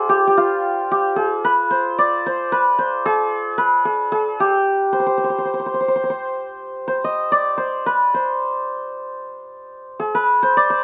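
Hypnotic and melancholic, this brief Persian excerpt in 6/8 features a solo acoustic santur, shimmering and ringing up front in light reverb, played between F4 and Eb5 across two sections that change at 6.5 seconds.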